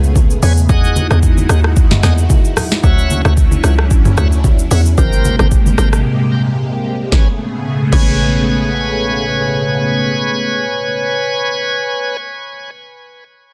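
A swung 112 BPM amapiano groove in A major rides on an up-front, tape-warm electronic afro-pop kit with a deep kick, smooth hats and a sharp, softly clipped snare, joined by very quiet, low-tuned acoustic congas and a hollow, bouncy log drum bass, while a mellow string-machine cello pad with phaser and ensemble chorus sustains maj9 chords and a bright, shouting tonewheel organ with key click, slow rotary and digital delay stabs above; after a brief break the drums and congas stop at 8.1 seconds, leaving bass, pad and organ to carry this soulful cut from a longer piece.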